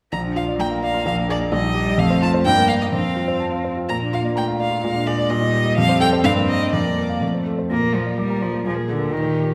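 A quick, lively and graceful classical-period movement for piano trio, cut from a longer piece and played with a rubato feel in 2/4. Up front, a single bowed violin carries the melody with a rich, expressive tone, soft attacks, vibrato and portamento, while a bowed cello sings a second line beneath it with its own vibrato and sliding phrasing. The concert grand piano provides an intimate accompaniment with deep bass and audible action noise, all set in a wet concert-hall reverb with a 2.0-second decay.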